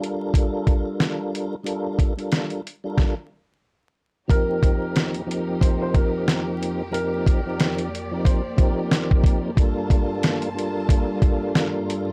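A mellow, round tonewheel organ and a dusty, sampler-style drum kit open this short, reflective boom-bap hip-hop cut, with a thumpy kick, fat snare and hi-hat sitting up front alongside the organ. The organ carries a slow rotary speaker, chorus vibrato and a touch of cassette-tape character, while the compressed, gritty drums carry a swung sixteenth-note feel in 4/4. A stop arrives at 3.0 seconds, and at 4.3 seconds the harmony moves from a Gm7 to an F7sus4 as a lush, bowed string section enters with expressive vibrato and a smooth top, lying softly beneath the beat. A woody, dark upright piano joins at the same moment with a brief melody of long-sustaining notes, playing until 9.5 seconds before the music settles back onto Gm7. Light reverb, vinyl crackle and a dark, warm production give the tough groove a worn atmosphere.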